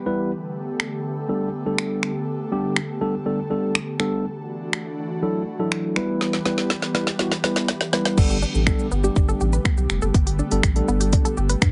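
A straight 4/4 deep house beat at 122 BPM, with a deep kick, woody snare, smooth hats, snaps and shaker, drives this euphoric, upbeat dance-pop excerpt in G major, with a drum fill from 6.2 to 8.2 seconds. A mellow tine electric piano sits up front over a soft, breathy, chorused pad, both pumping with the sidechain through a Gadd9, Dadd9 and Em progression. At 8.2 seconds a thick, saturated sub bass and a lush, punchy detuned pluck arpeggio with tape echo join in, all squeezed into a dry, heavily compressed, radio-like sound.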